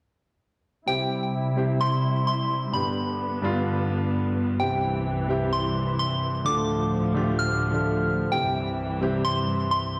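This EDM excerpt moves at 129 BPM in a straight 4/4, with an anthemic, euphoric mood in C major, cut from a longer piece. A soft, pure synth bell carries the melody high above, its FM tone striking quickly and then decaying, shimmering through chorus, phaser and delay. Beneath it, a warm concert grand piano provides accompaniment with deep bass, colored by tape echo, while a muted string section holds sustained chords, dark and veiled with vibrato and a smooth top under a low-pass filter and a filter sweep. All three parts sit up front and play together from 0.9 to 10.0 seconds over a simple progression of C, G, C, Dm and back to C. The whole is bathed in a wet scoring-stage reverb and heard as if played on a big sound system in a bare stone room, lending it a large, echoing presence.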